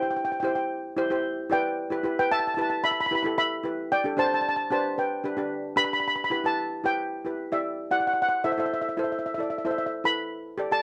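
Festive and bouncy, this calypso snippet at 112 BPM in straight 4/4 features two metallic, shimmering steel pans up front: a mellow lead pan played with soft rubber sticks carries the melody between B4 and B5, while cello pans struck with hard rubber sticks supply the accompaniment through Cadd9, Em, Dsus4 and G before moving to Em7 at 6.0 seconds and Am at 8.2 seconds, with light reverb and a cassette-tape character coloring the recording.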